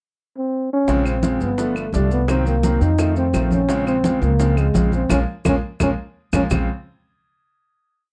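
Afro-Cuban jazz with a driving, sultry mood, this short complete piece opens with a breathy trombone alone in a pickup bar before the full band arrives at 0.9 seconds. Up front, the trombone sings a motif-based melody in song-like phrases, its dark tone carrying light vibrato and a smooth top. Beside it, a thumpy pizzicato upright bass with steel strings plays a tumbao that anticipates the chords, while a bright grand piano adds brilliant, syncopated chord stabs in rootless voicings over a minor-key progression. The percussion sits further back: hard-hand congas with slaps and open strokes, very quiet round bongos in steady eighths with hand bell, grainy maracas in a small room, and vintage, band-limited claves that enter at 1.1 seconds with a two-bar time line. A band accent and a drum fill drive toward a final chord that rings from 6.5 seconds, all captured in a dark, dry production with little reverb.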